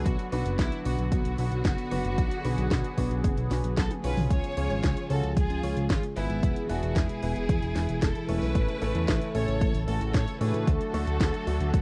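Lush, bowed violins with vibrato carry a melodramatic melody over a detuned sawtooth pad in the background, intimate piano stabs and a fat, up-front analog bass in this danceable italo disco excerpt, joined at 0.1 s by an overdriven punchy kick and a house kit of cracking snare and bright hats, with a drum fill at 3.8 s and filter sweeps on the piano and pad from 4.3 s, all in a dry, close 1970s-style recording with vinyl crackle.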